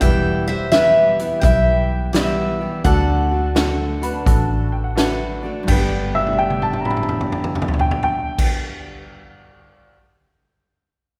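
Bathed in the wet reverb of a church or concert hall, this down-home, heartfelt honky-tonk and classic country piece swings at 85 BPM in G major, with a bright, up-front picked acoustic guitar carrying the melody over a second full-bodied acoustic guitar, a clear concert grand that plays a fill at 3.6 seconds, a dark, foam-muted vintage electric bass, and a natural drum kit with a fat snare and punchy kick that fills at 6.0 seconds, while a woody upright piano enters with a second line at 6.2 seconds.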